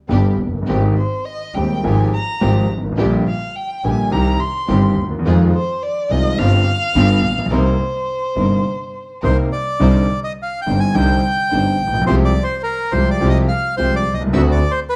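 Tango with a dramatic, tense mood and a rubato feel, cut from a longer piece and heard in a warm, reverberant production. An intimate, vintage concert grand piano with audible action noise and deep bass carries the accompaniment up front, a focused bowed double bass anchors the low end, and a lush string section adds smooth stabs in the background, while a dark, expressive violin sings a second line with vibrato and portamento from 1.0 to 9.2 seconds. At 9.2 seconds a reedy bandoneon enters with the melody, up front, to the close.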